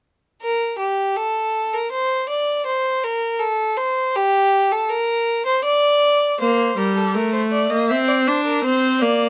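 Elegant and stately, this short passage cut from a longer baroque-style fugue for string quartet moves at a measured 80 BPM in a straight 4/4. A single bowed violin opens alone at 0.4 seconds, carrying the second line in a clear, smooth and even tone with vibrato, heard close and up front. At 6.4 seconds a bowed viola joins as accompaniment, its rich, focused voice also sung with vibrato and sitting up front beneath the violin. The two voices continue together until 9.3 seconds, with the harmony settling on a C7 chord lacking its third at 7.9 seconds. Light reverb gives the intimate pairing a touch of space.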